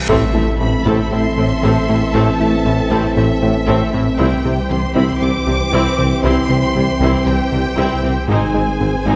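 A reverse cymbal and impact open this short cut from a longer hybrid orchestral and electronic film score, sitting in the background and ending by 2.1 seconds as the full ensemble arrives at 0.1 seconds. In A minor at 117 BPM in a straight 4/4, the music feels vast and relentless, moving from Am to C and then to G# at 8.3 seconds. Lush, vibrato-rich violins carry the melody high above a second, soft-attacked violin line with a smooth top, while close, focused violas fill the middle. A dark, distant French horn section holds sustained chords in the background, and a harp-like synth pluck rings through very quiet, mellow arpeggios with chorus and a filter sweep. Underneath, a fat, detuned sawtooth analog bass drives the riff, joined by a deep, saturated sine sub bass, a mellow tuba, and very quiet bowed cellos and double basses, the double basses sliding with portamento. A moderate scoring stage reverb gives the strings and horns a roomy sense of space.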